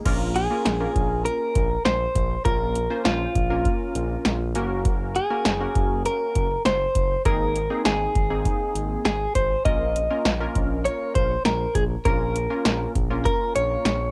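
Synth-pop in Bb minor at 100 BPM, this nocturnal, melancholic excerpt moves from Bbm through Gb and Abadd9 before returning to Bbm, over an up-front electro analog drum machine with deep kick, punchy snare, metallic hats and warm tape color. A smooth, gliding synth bass with vibrato and portamento sits low beneath a funky, detuned polysynth comp whose filter-plucked chords carry chorus, cassette-tape color and plate reverb. From 0.4 seconds a bright, clean, direct-recorded electric guitar takes the melody up front, picked and compressed, shimmering with subtle chorus, analog delay and plate reverb, all within a light reverb and the soft haze of a home cassette recording.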